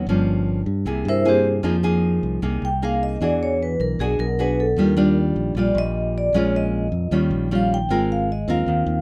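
This relaxed, romantic bossa nova in Eb major moves at 153 BPM in a straight 4/4 feel, tuned slightly high with A4 at 441 Hz, and is cut from a longer piece. A fingerpicked nylon-string guitar with a warm, deep classical tone carries the accompaniment from the start, alongside a direct, up-front fingered electric bass holding the low end. At 1.1 seconds the vibraphone enters with medium mallets, taking the melody as a solo in a metallic, ringing voice colored by a medium motor vibrato. The harmony drifts through rich extended chords such as Gm7b5, C7b13, E9 and Ebmaj9, settling on Ab69 as a new pass through the main section begins at 7.9 seconds. All three instruments sit close and present, with a light reverb lending a gentle sense of space.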